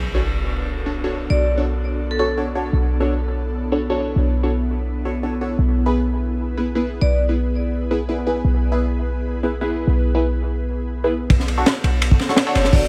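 Atmospheric and raw, this drum and bass passage in a jungle vein opens with a sub drop in the background while a deep, boomy 808-style bass with tube saturation sits up front beneath an ethereal, airy pad and a nasal, band-passed chord stab carrying phaser, lush chorus and dub echo, the harmony moving from Bm7 to E/B. A metallic, ringing vibraphone played with hard mallets drifts in for brief phrases through 12-bit sampler grit and dub echo. At 11.3 seconds a crunchy breakbeat kit with a high-tuned snare, tight kick and dark cymbals arrives in a build-up, all in a small room ambience.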